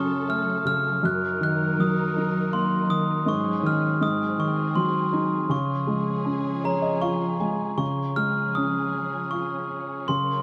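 Close, detailed microphones and light reverb give this short lullaby passage an intimate clarity, its tender, innocent mood unfolding in a rubato 3/4 at 79 BPM in Db major. A rubber-mallet glockenspiel carries the high melody with a mellow, bell-like ring, up front beside a soft, felt-muted upright piano accompaniment, while a veiled con sordino string section adds dark, lush bowed chords with gentle vibrato beneath. The harmonies drift from minor-tinged chords toward a resolving Db chord at 5.5 s, and the piano then plays a brief fill at 6.3 s before the music moves into a new section at 7.8 s.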